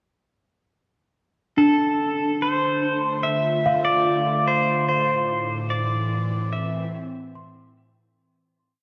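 At 1.6 s a breathy, chorused synth pad fades in on Dm7 beneath bell-like, slightly out-of-tune celesta arpeggios trailed by tape echo and a twangy pedal steel guitar carrying arching slide phrases with volume swells, and this serene, reflective ambient piece in D minor at 73 BPM drifts through a dark cathedral reverb to an Am chord at 4.9 s as the pad fades out by 8.2 s.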